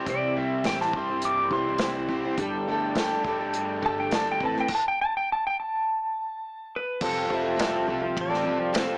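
Picked steel-string acoustic guitar, mellow accordion and a double-tracked overdriven electric guitar riff open this nostalgic folk rock and heartland rock excerpt, as a bright, twangy pedal steel guitar up front plays a fingerpicked slide solo with volume swells until 7.0 s, supported by a reedy electric piano with tremolo, woody pizzicato upright bass, an unplugged drum kit played with bundle sticks and a jingly tambourine entering at 0.7 s, set in light reverb and small room ambience with a small speaker sound.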